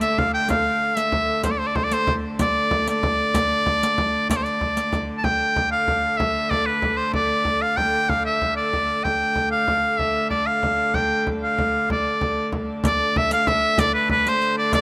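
Mysterious and ancient in mood, this medieval dance moves at 126 BPM counted in dotted quarters, in a straight 6/8 in D dorian with tuning set to A4 = 439 Hz. An edgy shawm carries the solo folk-style melody up front with a soft attack. Beneath it a single hurdy-gurdy holds a clear, nasal, earthy drone with an airy bow. A deep, large frame drum plays throughout, close and dry, while a riq with dark jingles sits in the background, dropping out at 5.0 seconds and returning at 12.8 seconds for the final passage. A moderate, lush hall reverb surrounds this rough home-demo mix, and the recording is a short excerpt cut from a longer piece.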